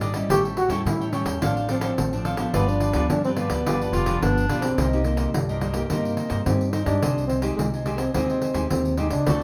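The cavaquinho, nylon-string guitar, upright bass and pandeiro open together in a bittersweet, nostalgic samba and choro groove at 107 BPM in C minor, a short passage cut from a longer piece. The crisp, picked cavaquinho sits above the full-bodied, fingerpicked classical guitar, whose finger squeaks can be heard from its place in the background, while the woody, dark pizzicato bass anchors the low end and the pandeiro adds a jingly shimmer under soft hands. At 0.3 seconds a breathy trombone takes the solo melody in a jazz style, its dark tone carrying a light vibrato and a smooth top. A bright, present clarinet in a classical style briefly adds a second line from 3.9 to 4.8 seconds. The harmony moves from A7 through Dm7/A and G7, then settles onto Cm7 and Abmaj7/C for the second half. A moderate, large studio reverb gives the ensemble a roomy finish.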